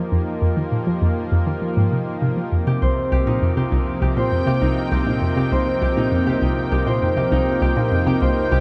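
A lush, airy unison pad opens this expansive, mysterious stretch of ambient sequencer-driven space music with sustained chords in shimmer reverb, joined at once by a hollow, bouncy square-wave pluck riff in the low register, colored by chorus, phaser, tape echo and a cassette tape grain, while a filter sweep runs over the synth arpeggio sound, before a ringing, thumb-plucked concert harp enters at 2.7 seconds with arpeggios, all set in a huge ambient reverb.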